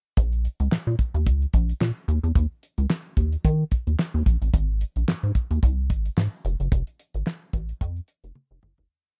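This dry, close recording has the feel of a 1970s-style studio, with little reverb, putting a rubbery square bass and a damped drum kit up front. It is a short, funky and danceable early-eighties boogie funk piece at 110 BPM in 4/4, with a light swing on the sixteenths. The acoustic kit plays a mid-tempo boogie beat with a tight kick, hi-hat, toms and a fat snare layered with handclaps, its top end rolled off for a warm, damped tone. The bass is hollow and bouncy, a wave-folded square tone with a resonant filter pluck and a moving notch, running from F1 to Eb3 in a fat syncopated line full of muted ghost notes, slides and chromatic approach notes. Both parts play together from 0.2 to 8.9 seconds as a single breakdown, fading out from 6.7 seconds before a brief drum fill closes the piece.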